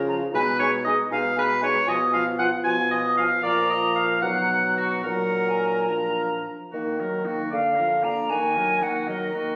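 A quick classical-period movement for wind quintet, cut from a longer piece, moves in a rubato 6/8 at about 71-79 BPM counted in dotted quarters, in Eb minor, with a dramatic, urgent mood. The concert flute carries the melody with an airy, straight tone and crisp attack, though it sits at a distance, while the oboe, warm with light vibrato and placed up front, sings a prominent second line just beneath it. The mellow bassoon anchors the bass with a touch of vibrato, and a warm, vintage-toned French horn and a mellow clarinet, the latter tucked in the background, fill out the accompaniment. The harmony opens on Abm/Cb and a diminished chord before leaning toward Bb, then the second section from 6.7 seconds alternates Ebm and Bb/D to settle back on Ebm by 8.3 seconds. The ensemble sounds through a wet scoring-stage reverb with a 1.6-second tail, captured on a phone in a club-like room, which gives the whole a roomy character.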